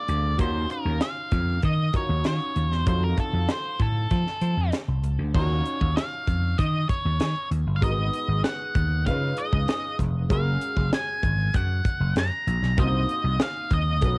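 A growly, up-front vintage slap bass drives this urban, nocturnal slice of polished 1980s jazz-funk pop at 97 BPM, alongside a crisp fusion drum kit with a high-tuned snare and punchy kick, a dark octave-fuzz lead guitar carrying the melody with cassette-tape grit, and a clear, boxy grand piano comping through analog chorus and plate reverb over rich chords such as Ebm9, Abm7 and Gbmaj9, the passage captured as a lightly reverberant home cassette recording with lossy artefacts.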